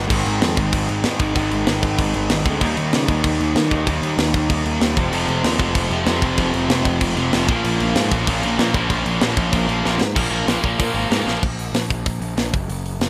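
The drums drive a straight 4/4 punk rock pulse at 191 BPM, and the mood is aggressive and raw in this short cut from a longer piece, tuned to A4 = 435 Hz. Two distorted electric guitars and a double-tracked fuzz guitar sit in the background with bright, picked riffs over a progression of Ab, Eb, Fm and Bbm, the first distorted guitar and the fuzz guitar compressed, and the second distorted guitar joining properly at 5.1 s. Up front, a tight metal drum kit with a medium-tuned snare, snug kick, crash and hi-hat sounds acoustic and mid-forward, its top rolled off. A growly, overdriven fuzz bass, direct and amped, holds the low end beneath the guitars. After a drum fill near 10.0 s the band hits a Bb5 chord, and from 11.4 s only bass and drums carry on through a dry, close room.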